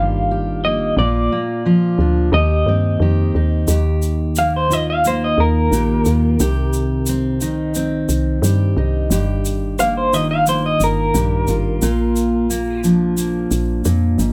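Warm and gentle, this acoustic folk excerpt at 88 BPM in Eb major pairs a full-bodied fingerpicked steel-string acoustic guitar and a soft, round, woody FM bass with a slightly broken-up, lo-fi electric guitar melody through a small old amp with tremolo, which turns to a clean solo at 3.7 s as a grainy, bright tube shaker joins, before the electric guitar stops at 12.8 s, all set in a moderate studio reverb.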